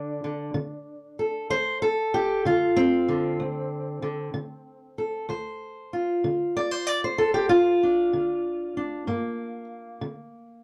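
A boxy, parlour-sized steel-string acoustic guitar is fingerpicked alone and up front from 0.0 seconds, spanning D2 to D5 in a brooding, soulful acoustic country blues. The guitar sits on Dm7 in D minor at 63 BPM in a straight 12/8, moving to Gm7 at 9.1 seconds. A moderate studio ambience and a dark, warm production frame this brief excerpt from a longer piece.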